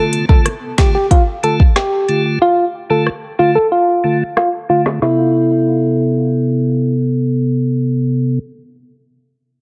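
A heavily compressed, radio-like sound with a low-pass filter sweep and light reverb frames this hypnotic, sultry dancehall excerpt in A minor at 92 BPM, where a round, gentle FM synth lead with chorus and delay carries the melody until 6.9 seconds, a piping, key-clicking tonewheel organ through slow rotary speaker and overdrive holds the accompaniment until 8.4 seconds, and an electronic afro-pop drum kit with deep kick, woody snare, rim click and metallic hats plays until 5.2 seconds as the harmony moves from Dm to Amadd9 at 5.0 seconds.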